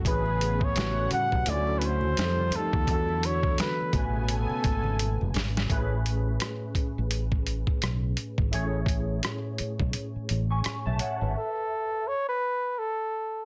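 A soft-attack, close-miked flugelhorn carries a relaxed, soulful jazz melody up front in this neo-soul R&B excerpt, over a barky, lightly overdriven tine electric piano, a round, dark fretless bass and a gritty, pitched-down boom bap sampler kit with a thumpy kick, rim clicks and finger snaps, while a smooth, warbling vintage analog pad and very quiet, low-tuned congas drop away by 5.7 seconds, the kick falls silent from 9.9 seconds, and the flugelhorn returns at 11.4 seconds to close.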